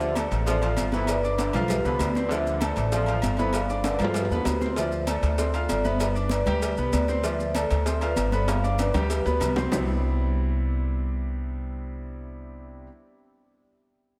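This joyful, sunny salsa excerpt at 194 BPM opens with a mellow, ringing vibraphone melody carried on soft mallets with delay and slow motor vibrato, over a woody, dark upright bass up front, a brilliant grand piano with long sustain, and a bright trombone section in the background that drops out at 4.5 seconds. Congas, agogo bells, timbales, cowbell and bongos drive the groove from the back of the mix alongside grainy maracas, with drum fills marking the section changes. The vibraphone falls away at 9.5 seconds and the percussion near 9.8 seconds. Piano and bass carry on to settle on a Cmaj9 chord, all bathed in a dreamy, lush hall reverb.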